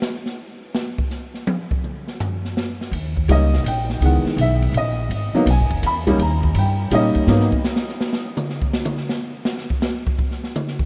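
An open jazz drum kit opens this cool, swinging excerpt alone, its dark cymbals, medium-tuned snare, boomy kick, hi-hat and toms sitting up front in a small-group swing and bop setting at 165 BPM in a lilting 3/4 with a swung eighth-note feel. At 2.9 seconds a woody, pizzicato upright bass arrives with its steel strings, and moments later a boxy upright piano adds accompaniment, the pair moving through a G# minor progression of D#7, C#m9 and G#m9 chords. Bass and piano both drop out at 7.5 seconds, leaving the drums to carry a second solo stretch until the close at 10.9 seconds. A huge ambient reverb with a long tail soaks the mix in a dreamy haze, contrasting the close, warm presence of the instruments.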